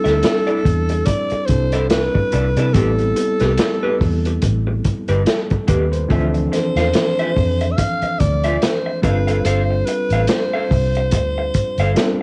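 Lush 1970s-style soul with a silky, smooth mood, cut from a longer piece and moving at a relaxed pace with a swung sixteenth-note feel. A growling alto saxophone carries the melody up front, its raspy, gritty tone close-miked and colored by vibrato in a pop style, with a cassette-tape character. Beneath it, a bell-like tine electric piano plays clean, bright accompaniment, while an electric guitar through a small old amp repeats a picked riff, slightly broken-up and compressed, bathed in lush chorus. A vintage muted fingered electric bass sits up front with a dark, round, foam-muted sound, joined by a vintage drum kit of hi-hat, tight kick and medium-tuned snare, muffled with a rolled-off top in a small room. The chords move from C69 through Am9 and Dm9 to G9sus4, and the home cassette recording keeps reverb to little or none, giving the whole a close, lo-fi intimacy.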